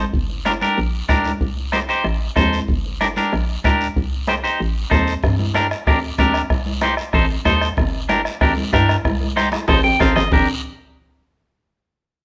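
Cumbia with a driving, danceable feel, this short excerpt from a longer piece moves at a brisk 188 BPM in straight 4/4 and sits in G minor, cycling through G minor, C minor and A diminished. A bright, clean, picked electric guitar carries the accompaniment up front, ranging from D4 to G5, while a hollow, bouncy FM bass with a fast, punchy attack and mellow decay anchors the low end between G1 and G2. Beneath them, a soft-beatered acoustic bombo sounds in a live room, ringing medium-tuned congas struck with hard hands add a vintage, band-limited color, and a raspy guiro sits close and dry at a lower level. All parts play from the opening moments through about 10.4 seconds, framed by a moderate large-studio reverb. Near the end, a drum fill begins at 9.0 seconds and the guitar adds its own fill at 9.7 seconds, both leading back to G minor at 10.3 seconds.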